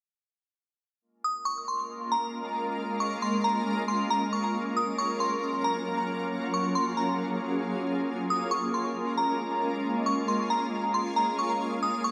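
The rhythm sits in a half-time 4/4 feel at 136 BPM, giving this dreamy, floating hip hop fragment in Db major a slow, unhurried sway. A glassy synth bell carries the melody from 1.2 seconds, its crystalline, vintage FM tone warbling through chorus, tremolo and analog delay in a high register. At 1.9 seconds a shimmering ambient pad enters with sustained chords, its detuned, sine-based layers and octave-up shimmer blooming slowly and releasing long, bathed in chorus and its own reverb while sitting up front in the mix. The harmony drifts between Db6 and Gbmaj7, lending an ethereal, suspended quality. A moderate spring reverb and an echo-heavy mix wrap both parts in a hazy space, and the piece is cut from a longer work, running to 12.1 seconds.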